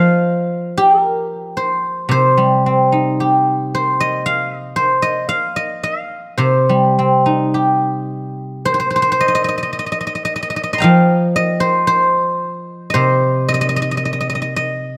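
Contemplative and elegant, this fragment of a longer Chinese traditional piece features a solo guzheng. The instrument plays alone for the full 15 seconds, set in a loose 2/4 that bends freely under rubato. Plucked with fingerpicks, its mellow, silvery notes ring out across a span from C3 to C6. The guzheng sits up front, captured by close, detailed microphones that reveal every nuance of the acoustic tone, with light reverb adding a touch of space. Around 8.7 seconds the music moves into a new section, continuing its unhurried, reflective character.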